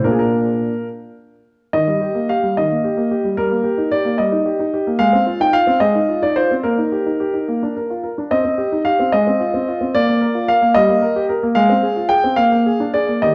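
Set in 6/8 at 73 dotted-quarter beats per minute with a straight feel, this short excerpt from a classical-period piano sonatina moves in Eb major with an elegant yet restless character. A solo grand piano carries everything from 0.0 to 13.3 seconds, spanning Bb2 to G5 with a clear, smooth, vintage tone and long sustain, placed up front in the mix. After a brief opening on Bb, the harmony settles onto Eb at 1.7 seconds and then moves steadily through Eb/G, Fm7/Ab and Eb/Bb before turning toward Cm, Fm/Ab and Bb. The passage closes on Bb7 at 12.4 seconds, leaving the phrase unresolved as the cut arrives. A wet recital hall reverb with a 1.5-second decay surrounds the instrument, and the overall production leans dark and warm.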